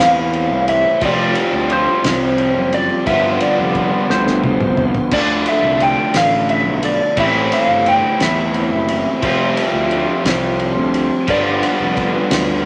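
A lightly driven, wah-inflected lead guitar sings a compressed melody over a double-tracked overdriven guitar riff, round fuzz bass, a cloth-damped thuddy drum kit with dark cymbals and a drum fill at 4.1 seconds, and a very quiet piping tonewheel organ with slow rotary, giving this short cut of dark, mysterious 6/8 psychedelic rock a snug small-room ambience as the chords cycle from Am7 through Fsus2, G7sus4 and Dm.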